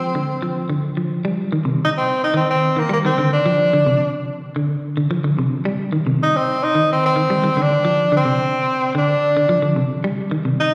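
A straight 4/4 afrobeat groove drives this short, intense cut from a longer piece, and both parts play from the first moment to the close at 10.7 seconds. A clear, punchy tenor saxophone carries the melody up front in a pop-style solo, its scooped notes and vibrato sounding distant and roomy. Beneath it, a dark, clean semi-hollow electric guitar picks out fingered arpeggios with a hollow-body tone, also placed up front. Each instrument carries a slapback echo. The harmony opens on Dm7 before settling into a loop that moves between Cm and Csus24 from 1.3 seconds onward. The whole performance sounds like a live gig heard through a venue's PA, washed in a lush, wet hall reverb that lends it a spacious recital-hall glow.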